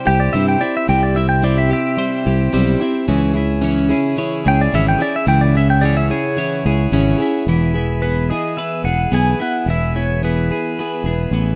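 Bright picked acoustic guitar with finger squeak, a clean, compressed twelve-string electric riff and a key-clicking tonewheel organ through a stopped rotary speaker in the background open this warm, nostalgic folk and heartland rock piece at 109 BPM in E major, while an up-front, twangy pedal steel solos with fingerpicks, slide and volume swells until 7.5 seconds over a direct, amped fingered bass, before the chords move from C and C#m onto E in a dry, rough home-demo mix.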